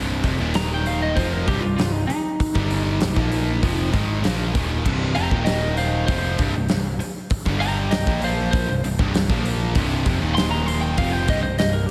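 Hard rock in C minor at 98 BPM, this aggressive, driving passage is cut from a longer piece and runs just under 12 seconds. A lead electric guitar solo carries the melody from 0.6 seconds, its lightly driven, compressed tone slightly broken-up and twangy, with tape echo trailing the picked notes between Eb4 and C6. Behind it sit three picked distorted guitars on the riff: a sludgy, overdriven one with a warm body, a bright, tight, distorted one, and a double-tracked overdriven part, all carrying slapback echo. A growly, amped electric bass adds punch down low, while an up-front acoustic drum kit with a dark, smooth character drives the straight 4/4 with a punchy kick, medium-tuned snare, hi-hat and crash cymbal. A lush hall reverb gives the whole mix a big arena sound.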